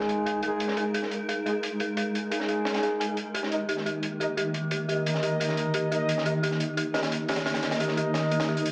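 A straight 4/4 breakbeat at 175 BPM drives this tense, mechanical excerpt of dark technical drum and bass, its crunchy, saturated hi-hat and high-tuned snare filtered into a gritty, rolled-off tone, with a barely audible cabasa entering at 0.1 s. A swarming, detuned sine drone holds sustained chords up front, moving from G#sus2 to D# at 3.3 s, while a soft-attack brass ensemble plays tight classical-style stabs through a low-pass filter and tape echo. An eerie, inharmonic FM synth bell with chorus and tremolo plays arpeggios under a filter sweep, all set in a lush 2.0-second hall reverb with a dense, heavily limited master.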